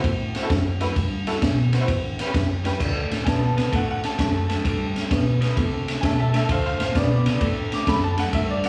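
A swung shuffle in 4/4 drives this gritty, swaggering electric blues excerpt, with a crunchy breakbeat kit up front, its punchy kick, high-tuned snare, dark ride and crash cymbals and saturated, rolled-off top giving it a warm grit, under a round, direct fingered bass. A slightly broken-up, lo-fi electric guitar through a small old amp plays a low riff with slapback echo, while a jangly, metallic tack piano adds bright vintage accompaniment, also touched with slapback, over chords moving from Dadd9 to A9 and then D7 at 2.8 seconds. The whole thing sounds like a live club gig heard through the venue's PA, wrapped in small-room ambience and club reverb.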